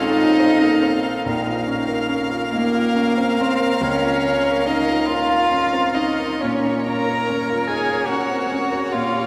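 Warm and lyrical, this slow, rubato piano quintet movement in 6/8 and Bb minor at 47 BPM sets a rich, pure violin melody floating above an airy-bowed second violin, an intimate, up-front cello with vibrato, and a dark viola in the background, all bowed sul tasto with soft attacks, over a polished, present baby grand piano, the whole bathed in the long, wet reverb of a church or concert hall.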